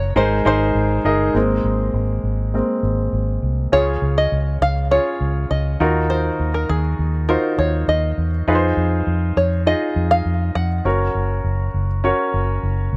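A fingerpicked, twangy open-back banjo carries the melody from the start over a clear, polished baby grand piano and a dark, round, foam-muted electric bass, setting a hopeful, anthemic piano-driven pop feel at 101 BPM in Db major. The piano steps forward with a solo passage from 1.3 to 3.7 seconds, and then the band settles into a longer section moving through Db, Ebmadd9, Fm7 and Gb. The plunky banjo drops out at 11.7 seconds while the up-front piano and punchy bass carry on to the close of this fragment of a longer piece, all in light reverb.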